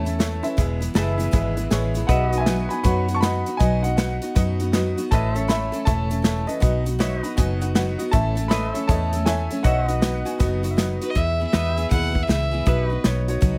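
Honky-tonk and classic country at 159 BPM in E major, with an easygoing, sunny swing, opens on a woody upright piano solo, with honky-tonk piano fills around 7.0 and 10.0 seconds, backed by a jangly tack piano, a bright picked dreadnought acoustic guitar with finger squeak, and a clean pedal steel guitar holding sustained chords with volume swells. A dark, foam-muted fingered electric bass and a punchy, airy country drum kit of kick, snare and hi-hat sit up front. At 11.0 seconds a focused, boxy bowed fiddle takes the melody with light vibrato, all captured close and dry in this brief cut from a longer piece.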